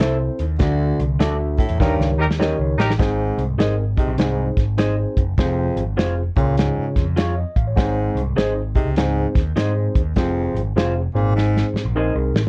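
A dry, dark soul drum kit with vintage 12-bit sampler grit sits up front in this joyful, danceable cut of uptempo 1960s-style soul at 100 BPM, swung and in Ab major, joined by a bright, overdriven picked bass, a mellow tine electric piano heard through its built-in speakers, lo-fi stabs from a slightly broken-up guitar through a small old amp, a close-miked subtone baritone saxophone riff from 0.6 s, and a soft-attack vintage horn section adding a brief second line at 1.8 s, the mix carrying light reverb and a cassette tape character.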